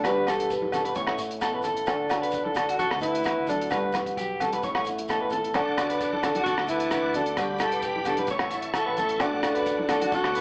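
Joyful and danceable, this short highlife guitar band excerpt moves in a straight four. A breathy alto saxophone carries the melody from a distant, roomy spot, its light vibrato floating over a fingerpicked steel-string acoustic guitar, complete with finger squeak, and a twangy, slightly broken-up electric guitar whose arpeggios sit up front, coloured by spring reverb. Underneath, a deep, round dub bass and a cloth-damped, thuddy drum kit with a tight kick, hi-hat and rim click keep things dark and smooth, while ringing agogo bells, a grainy shekere and soft-handed congas, entering at 0.6 s, fill in the percussion. At 5.5 s a reedy tonewheel organ joins with sustained chords through a slow rotary speaker and chorus vibrato, key click audible. The whole band sounds like it's playing live in one room, bathed in a lush studio reverb yet filtered to an AM radio tone.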